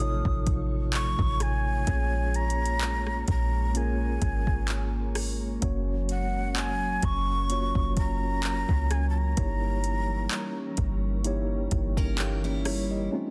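Contemporary R&B at a slow 64 BPM with a gentle sixteenth-note swing, tender and romantic, where a breathy jazz flute with vibrato and tape echo carries the melody until 10.6 seconds over mellow tine electric piano, a glassy, warbling FM pad with ensemble chorus and built-in reverb, a deep, boomy 808-style bass, and an overdriven electronic drum kit of soft kick, metallic hi-hat, handclaps and rim click, moving through F7b13/A, A#m7, F#maj7 and D#7b9/G before a bright picked steel-string acoustic guitar with finger squeak and tape echo adds arpeggios at 12.0 seconds in this dense, heavily limited excerpt.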